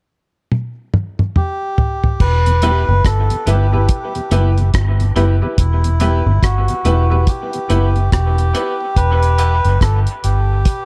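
A swung, unhurried dub reggae groove opens with a cloth-damped, thuddy drum fill of kick, toms, rim clicks, hi-hat and dark crash, and a reedy, breathy melodica drifting through dub echo joins at 1.4 seconds. At 2.2 seconds a foam-muted, punchy electric bass settles up front on E minor. It is soon joined by a mellow tonewheel organ with key click and slow rotary speaker and a twangy clean electric guitar, both in the background, along with woody, slightly detuned upright piano stabs, each thinned by a high-pass filter and trailing dub echo. A filter sweep arrives from 5.6 seconds in this deep, meditative, echo-heavy fragment, set in light small-room ambience.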